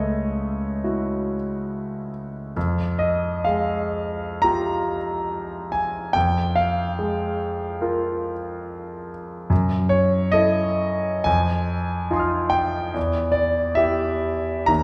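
Played with a rubato feel in 4/4 at roughly 59 to 75 BPM, this hazy, mysterious fragment of impressionist classical piano drifts through shifting harmonies, from F#m7/C# and Fmadd9 to a closing E minor around 13.0 seconds. A solo concert grand carries the whole passage, sounding brilliant and up front, with a deep bass, long sustain and audible action noise. A wet recital-hall reverb with a 1.8-second decay surrounds it, heard from further back in the room.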